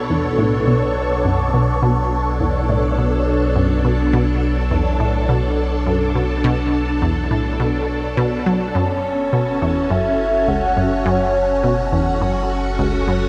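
A dreamy mix soaked in lush hall reverb opens this expansive, hypnotic stretch of sequencer-driven ambient space music in B minor at 104 BPM, cut from a longer piece. A swirling, vintage string machine holds bright chords through ensemble chorus and phaser over a deep, round sine sub bass, while a squelchy, resonant blip pluck runs its riff with chorus and analog delay. At 8.7 seconds, as the harmony moves from Bm7 to F#m, a mellow, octave-layered synth lead with vibrato carries a short melody until 12.2 seconds.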